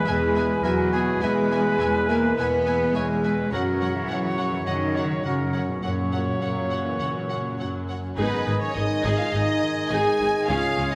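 A lush orchestral sound bathed in the wet reverb of a scoring stage opens this determined, swashbuckling cinematic excerpt at 104 BPM, where a clear violin section carries the melody from 0.1 s while a second, intense violin section, a bright oboe, an airy silver flute and a close-miked clarinet add second lines. A mellow French horn section and a vintage-toned trombone section hold sustained chords, a distant, roomy trumpet section adds tight stabs, and a ringing, fingerpicked harp sounds arpeggios in the background alongside a smooth-topped viola accompaniment. Rich cellos and double basses anchor the bass as the harmony moves from E to F# and settles on Abm at 8.2 s.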